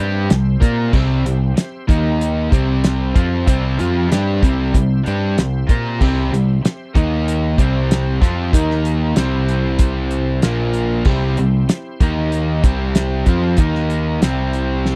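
A cloth-damped, thuddy drum kit with a fat snare, tight kick and dark cymbals punches up front from 0.3 seconds, driving this confident classic rock passage at 95 BPM in straight 4/4 alongside a growling, overdriven picked bass, a warm overdriven guitar riff up front, a bright overdriven guitar riff in the background and a very quiet, shouting tonewheel organ with key click and slow rotary sustaining chords, as the harmony moves mostly between C and Eb5 with a brief turn to Bb5, all captured in a dry, close 1970s-style studio sound.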